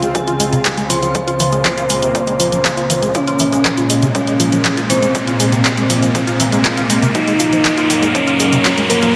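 A soft, octave-layered synth lead with a round, vibrato-touched tone carries the melody over a lush unison pad, a tight sequenced arpeggio with a cassette-tape grit, an eerie inharmonic synth bell in the background, an up-front punchy analog drum machine with handclaps and hi-hat, a very quiet electronic kick, a grainy egg shaker and a riser entering at 0.3 seconds, all in a hypnotic, dramatic melodic techno build-up at 120 BPM that moves from Dbmaj7 to Bbm7 to Gb, soaked in plate reverb and pumping sidechain.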